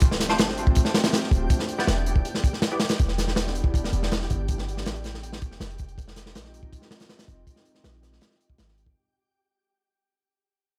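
A lightly reverberant, raw and nostalgic drum and bass and jungle cut that fades out across its 9.0 s, built on a gritty, saturated breakbeat kit up front, a deep, boomy 808-style bass with tube saturation, a warbling lo-fi pad with chorus, a faint twinkling granular shimmer in the background, and a nasal, band-passed chord stab with phaser and dub echo that sounds from 0.3 to 2.8 s over chords moving from Dm7 through Em7 to Fm7.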